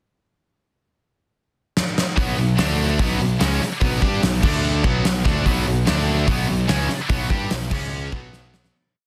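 Driving, heavy hard rock in B minor at 146 BPM, where a gated 80s drum kit with a fat snare, punchy kick and bright cymbals enters up front at 1.8 s with a fill, then at 2.2 s a fuzzy, overdriven picked bass doubles a power-chord riff of B5, D5 and Bm played by three background guitars (a double-tracked high-gain one, an overdriven one and a tight distorted one), all in a dense, heavily limited studio mix that fades out from 7.1 s to its end at 8.7 s.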